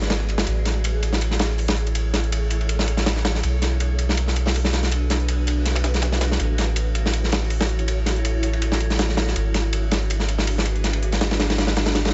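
A lightly swung sixteenth-note breakbeat drives this frenetic, raw drum and bass and jungle passage, cut from a longer piece. Up front, a crunchy acoustic breakbeat kit plays ride cymbal and a medium-tuned snare with a saturated, gritty, mid-forward tone, its dark cymbals and rolled-off top keeping the highs dull. Behind it, a dusty, compressed sampler-style soul kit adds hi-hat and snare with a tape-warm character, re-recorded in a large room and set well in the background. A deep, round dub sub bass sits prominently underneath, its soft triangle and square tone given a touch of tube saturation. Above, a cloudy, blurred granular pad of detuned sine voices fades in slowly and evolves across Amaj7, Bm7, F#m7/A and G#m7b5, bathed in its own reverb. The whole 12.1-second span carries a small-room ambience with a subdued, darkened top end.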